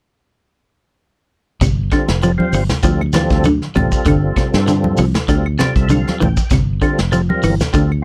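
Defiant and funky, this short afrobeat excerpt at 98 BPM with a light 16th-note swing sets a twangy, slightly broken-up electric guitar arpeggiating over a dark, round fingered bass and up-front brushed drums from 1.6 seconds, with bright congas, woody claves and a grainy shekere in the background, while a fat, lightly overdriven tonewheel organ with key click and slow rotary speaker joins at 1.9 seconds and plays a fill from 5.3 seconds over chords moving between G5, Dm7 and Gm7 in a dry sound.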